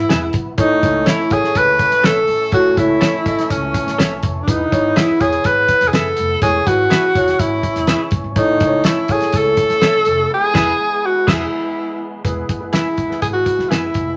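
A smooth, up-front tenor saxophone carries the melody with vibrato in this joyful, uptempo 1960s-style soul excerpt at 123 BPM in E major, moving between E and A chords. A very quiet, airy vibraphone with soft mallets plays a second line until 10.3 seconds, while an intimate grand piano with audible action noise accompanies, a gritty overdriven tonewheel organ holds sustained chords with key click in the background, a woody pizzicato upright bass growls beneath, and a clean semi-hollow electric guitar adds compressed stabs with a vibrato effect. A cloth-damped, thuddy drum kit with a fat snare, tight kick and dark cymbals sits up front, the band hits an accent from 10.3 to 12.2 seconds, and wet studio reverb surrounds the group.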